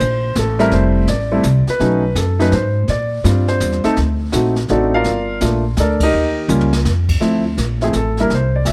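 A warm grand piano carries the melody up front in this short, swinging jazz trio piece, moving between F3 and F5 with a natural tone. It is in D minor at 166 BPM in 3/4 time, with swung eighth notes and a late-night mood, and it is cut from a longer performance. The upright bass is played pizzicato on steel strings and sits close, with a woody sound. The brush drum kit is set further back in a small, roomy space, with dark cymbals, a medium-tuned snare and a boomy kick. The harmony moves through rich chords such as Fmaj9, D7b9 and Gm9, and the band hits an accent at 6.0 seconds before a brief drum fill at 6.5 seconds. A new section opens on Dm9 at 7.2 seconds, with light reverb around the trio.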